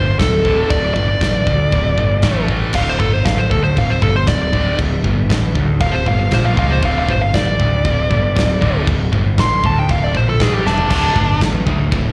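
Heavy metal in D minor at 118 BPM, heavy and relentless, captured as a live club gig through the venue's PA with club reverb and a faint mains hum. A nasal lead guitar with a parked wah, overdriven and up front with slapback and tape echo, solos from D4 to C6 over a scooped, bright high-gain riff guitar, a punchy fuzz-driven picked bass and a big rock kit with a tight kick, medium-tuned snare, china, crash and toms. A drum fill lands at 10.7 seconds, and a second heavy high-gain guitar joins in the background at 10.9 seconds over the D5, A5 and Bb5 power-chord movement.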